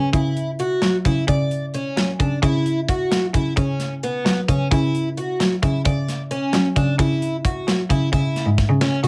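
A shimmering, octave-doubled twelve-string acoustic guitar opens this brooding, intricate progressive instrumental cut in 5/8 at 263 BPM in eighths, its picked arpeggios joined almost at once by a rich, focused bowed cello with vibrato carrying the bass and a tight metal drum kit of hi-hat, tight kick and medium-tuned snare with a rolled-off top, all three parts up front in light reverb as the harmony moves through C#m, Dadd9/C#, C#m7 and a brief unharmonized gap before returning to C#m in C# phrygian.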